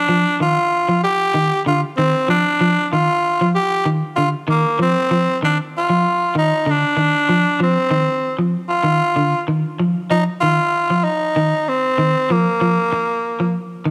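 A raspy, growling tenor saxophone carries a bright, lightly vibratoed pop-style solo melody up front from the start, joined at once by a twangy, slightly broken-up electric guitar picking arpeggios in this defiant, funky afrobeat excerpt at 96 BPM with a gentle sixteenth-note swing, circling Ebmaj9 and Ebsus2 before moving to Cm at 10.1 s, all set in a moderate plate reverb.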